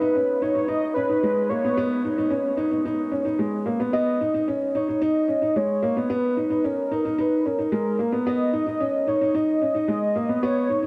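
Moving and melancholic, this short electronica excerpt in G# minor moves at 111 BPM in a straight 4/4. An upright piano plays a riff in its lower-middle register throughout, sitting up front with a woody, boxy and intimate character, audible action noise, long sustain and delay. Above it, a velvety synth lead carries the melody from A#4 to D#5, its detuned sawtooth and triangle unison voice smooth and mellow, with a fast attack, sustained notes, vibrato and chorus. The passage builds up over the first 3.9 seconds on a G#m chord, then drops at 3.9 seconds into a rootless G#m that holds until the end at 10.9 seconds. A huge ambient reverb with a long 8.5-second tail surrounds the dark, warm production, and the piece is clearly cut from a longer work.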